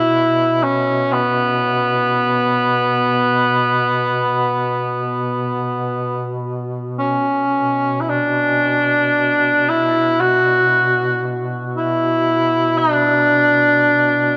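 A dark cor anglais with light vibrato carries the solemn, mournful melody up front in classical style over a mellow duduk drone on B2, played with vibrato and scooped notes in folk style, in this free-time Caucasian folk lament in B minor, cut from a longer piece, where both parts sound throughout the 14.4 seconds, a new section begins at 7.5 seconds, and a long, wet cathedral reverb surrounds them.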